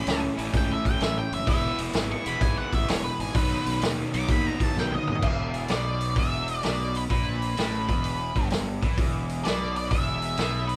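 Swaggering and gritty, this short cut from a longer piece sits between blues rock power trio and southern rock, moving at 128 BPM in 4/4 with a swung eighth-note feel. An octave-fuzz lead guitar carries the melody in a range between G#4 and D6, taking a solo over the first 5.2 seconds, while a crunchy, overdriven rhythm guitar, double-tracked and up front, drives the riff in the low and middle register. A fuzz-laden fingered electric bass, bright and growly with a punchy attack, enters at 0.1 seconds alongside a vintage acoustic drum kit whose dark cymbals, medium-tuned snare, punchy kick and toms sit mid-forward with a rolled-off top. The harmony moves from A to E to B, and a drum fill from 4.8 seconds leads into a new section at 5.2 seconds built on an E5 power chord. The band sounds as if playing live together in one small room, with a moderate, short reverb that keeps the raw, crunchy sound close and immediate.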